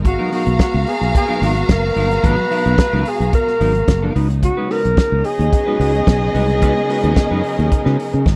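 A dry, close sound with little reverb frames this driving, glamorous disco excerpt at 110 BPM in a straight 4/4, moving in G# dorian over G#m9 and then C#9sus4 at 4.2 seconds. Up front, a tight soul drum kit pumps with a fat snare, tight kick and warm, rolled-off top, while a round, punchy fingered electric bass sits dark and foam-muted beside it. A mellow electric guitar adds clean, fingered accompaniment colored by analog chorus. Two bowed string sections spread lush vibrato: a dark, expressive section carries a second line through tape echo, and a focused, smooth-topped section holds sustained chords in the background. Leading from 0.1 seconds, a breathy alto saxophone sings the melody with a soft attack, scooped notes and a whispered, intimate tone that feels both present and roomy.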